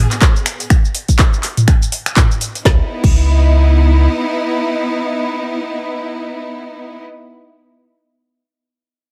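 Warm and hypnotic, this afro house excerpt at 123 BPM in C# minor opens on a drop where a deep, round sine sub bass pumps with sidechain until 4.1 seconds, a punchy, tape-tinged electronic kick and an overdriven afro-pop kit of woody snare, metallic hats, shaker, finger snaps, handclaps, toms and crash drive up front with a swung sixteenth feel until 3.2 seconds, and a lush, clear bowed string section with vibrato holds pumping sustained chords from a rootless C#7 into C#m9 through to 7.0 seconds, all under light reverb.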